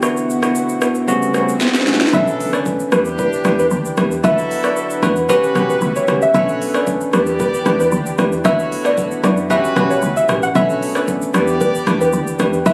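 Captured on a phone in the room, this short cut from a longer afrobeats track carries a light club-style reverb, digital ambience and compression, and its mood is sultry and hypnotic. It opens on a bell-like, up-front tine electric piano and a lush, detuned unison pad sitting in the background under chorus, with an electronic afro-pop drum kit of deep kick, sharp snare, rim click, shaker and smooth hats. A very quiet electronic swell and impact rises from 1.0 seconds, and a short drum fill leads into the main section at 2.1 seconds. There a soft, round pluck carries the melody through chorus and delay, a clear pop-style horn section with light vibrato adds a second line, and a woody, punchy log drum bass anchors the low end. The harmony cycles through rich extended chords such as D69, Bm9 and Em7.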